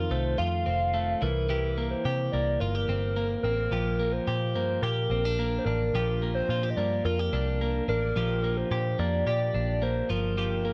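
Light reverb gives this short cut from a longer jangly indie pop piece a breezy, nostalgic air. It moves at 108 BPM in a straight 4/4 in Bb major, tuned slightly low to A4 = 439 Hz, and the same section plays twice over F7, C7 and Bb6, with a Gm7 arriving at 10.1 seconds. A warbling lead carries the melody between Bb4 and F5, a detuned blend of square, sawtooth and triangle waves over a sub octave, with a fast attack, sustained notes, chorus and vibrato. Up front, a clean, compressed twelve-string electric guitar picks arpeggios, while a foam-muted vintage bass adds round, punchy, dark low notes from F1 to C3. The three parts play together from the start to the end at 10.7 seconds.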